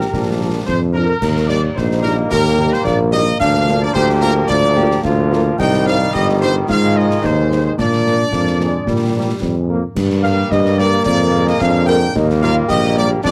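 Military-style march for wind band in Eb major at 110 BPM in 2/4, spirited and proud, where a tight, clear trumpet section carries the melody over a mellow, up-front tuba bass, with woodwinds and a distant, roomy euphonium on second lines in the background, bright trombone chords from 0.1 s, very quiet dark French horns, and close, dry snare, bass drum and dark clash cymbals, all in a small room with a dry, gritty sound, cut from a longer piece and landing on Eb at 12.2 s.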